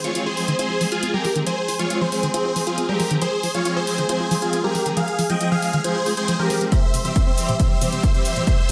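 A straight 4/4 pulse of layered, metallic electronic hi-hat and shaker drives this uplifting trance build-up, cut from a longer piece, until a punchy, tape-toned electronic kick lands up front at 6.7 s for a drum fill as the harmony moves from F minor to C. Over it, a huge, euphoric, detuned supersaw lead carries the bright, compressed melody with phaser, digital delay and sidechain pumping, while a tight sawtooth sequenced synth with filter plucks and chorus runs arpeggios beneath. A distant, floating string section sustains soft-attack bowed chords, and a faint electronic riser appears at 8.5 s in a moderate digital room, leaving a driving, bittersweet mood.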